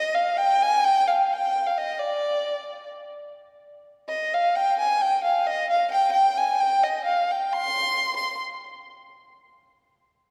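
In free time, this bittersweet, virtuosic Balkan folk excerpt, tuned to A4 = 439 Hz, features a single bowed violin up front, dark and woody with a boxy edge and light vibrato, playing solo from 0.0 to 8.4 s between D5 and C6 within the wet reverb of a church or concert hall.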